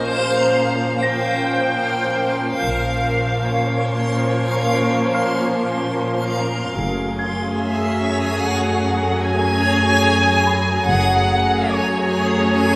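Mysterious and eerie, this slow cinematic cue in 5/4 at 73 BPM, cut from a longer piece, sets veiled, con sordino string sections in a wet scoring-stage reverb: two muted chamber violin sections carry the melody and a second line over symphonic violas, cellos and, from 2.7 to 11.7 s, double basses, all bowed with vibrato and dark in tone. A reversed, granular, detuned swelling texture sits up front with sustained chords, while a delicate, bell-like small celesta glimmers in the background. The harmony moves from Bbmadd9 to Gbmadd9 at 6.8 s, where a very quiet third muted violin section adds a smooth, high texture.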